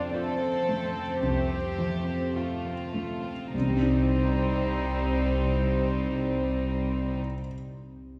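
A felt-muted upright piano opens this cinematic, emotional film score in C minor, its soft, intimate tone carrying audible action noise beneath a mellow, airy flute ensemble, a background line of clear violins, rich violas and a very quiet, ringing concert harp playing fingerpicked arpeggios. Almost at once, at 0.1 seconds, a second violin section takes the melody, bowed sul tasto with a soft attack and a pure, floating quality that feels close at hand. The mood is longing and moving, unfolding at a rubato 53 BPM in 4/4 and slowing down through the opening 3.5 seconds as the harmony shifts from F to C minor. At 1.2 seconds a dark, woody double bass section and a warm cello section, both with vibrato, join on a low C to ground the texture. The strings and flutes stop at 7.2 seconds, the harp rings on until 7.5 seconds and the piano lingers until 8.2 seconds, all heard from further back in a wet scoring-stage space with a 2.0-second reverb tail, in a passage cut from a longer piece.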